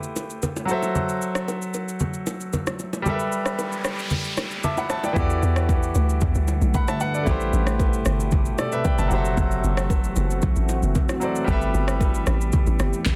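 A hollow, bouncy log drum bass arrives at 5.2 seconds in this soulful, late-night amapiano excerpt, joining a brilliant concert grand piano, a layered deep house drum kit with handclaps, rim clicks, shaker and a softly clipped snare, ringing bongos and congas, an electronic noise sweep and short piano fill while the kick drops out from 4.1 seconds, and a moody, detuned pad with chorus and sidechain pumping from 5.9 seconds.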